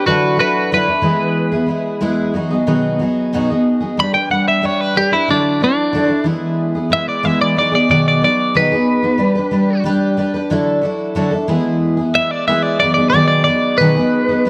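A clean, twangy twelve-string electric guitar solo rings out bright and compressed with a warbly pitch drift over a dark, full-bodied, shimmering picked twelve-string acoustic guitar, both up front in a small room with light reverb, giving this nostalgic, open-road rock excerpt a cycling Dadd9, E, B6 and G progression across its 14.5 seconds.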